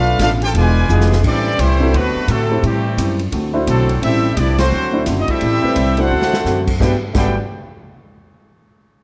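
Swinging at 172 BPM in G major, this joyful, brassy big band jazz excerpt puts a bright trumpet section on the melody over a tight trombone section's second line, with a woody pizzicato upright bass up front, a clean, picked hollow-body archtop guitar and an airy, polished drum kit with dark cymbals and a punchy kick, all in light reverb, while an intimate upright piano with audible action noise joins at 1.8 seconds and the band hits an accent at 4.5 seconds before landing on Gmaj9.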